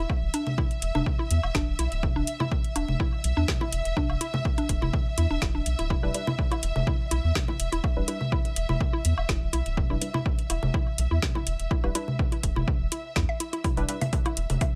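A lightly reverberant mix carries this sparse, cool minimal techno excerpt in E minor at 124 BPM, with a subtle 16th-note swing and a punchy, tape-warm electronic kick sitting up front beside a round, deep analog bass, both heard from the start. A woody, mallet-like FM pluck plays the riff through chorus, digital delay and sidechain pumping, while overdriven garage drums with a woody snare and metallic hats and gritty woodblock and congas fill out the groove in a small room. A lush, close bowed string section holds a high E with vibrato under the pumping, and from 6.0 to 14.0 seconds a muted, detuned sawtooth dub chord stab adds mellow, evolving filtered hits with chorus and delay.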